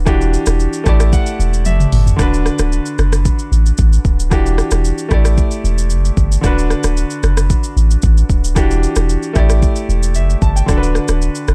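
Romantic and joyful, this short afrobeats excerpt moves with a straight groove in 4/4. A clear concert grand piano carries the accompaniment, intimate and polished with audible action noise, and plays a fill from 0.6 to 2.2 seconds that leads out of the brief opening passage. Underneath, a punchy sine sub bass with a pitch-drop attack sits up front, deep and sustained. An electronic afro-pop drum kit enters at 0.1 seconds with a deep kick, warm hats, rim click, shaker and toms, adding its own fill just before the main section settles in. The harmony cycles through Em9, A7sus4 and D6, and the whole excerpt has a dry, gritty hardware sound with little reverb.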